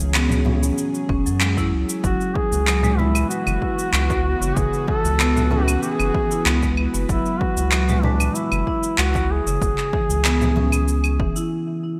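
A straight 4/4 groove at 95 BPM drives this mystical, organic downtempo excerpt, with electronic shaker, handclaps and claves carrying a tape-tinged, gated-reverb pulse from the start, congas sitting bright but distant in the background from 0.3 seconds, and a punchy, overdriven electronic kick joining at 1.1 seconds. Underneath, a round, deep analog bass holds the low end with sidechain pumping, while a woody marimba with rosewood bars spins airy arpeggios through a digital delay. Far back in the mix, a string-like, detuned sawtooth drone sustains tense chords with slow attack, vibrato and its own reverb, also pumping through its sidechain, opening on an F#7(no3) chord. At 2.0 seconds a warm duduk steps up front as the solo melody, folk-style with vibrato and scooped notes, its vintage tone trailed by digital delay. The whole is set in a moderate plate reverb with a bright 1980s-style digital sheen, and the parts drop out into a brief stop at 11.5 seconds.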